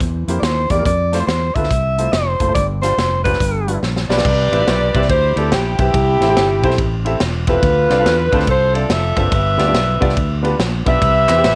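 A tight, close-miked saxophone section carries the melody from 4.1 s, following a clear solo alto saxophone with vibrato, in this soulful, reverent uptempo gospel piece at 142 BPM with a swung 4/4 feel in C major, backed by a woody upright piano, a punchy fingered electric bass up front, a natural country drum kit that plays a fill at 3.8 s, and a hollow group handclap in the background at 11.3 s, set in light small-room reverb.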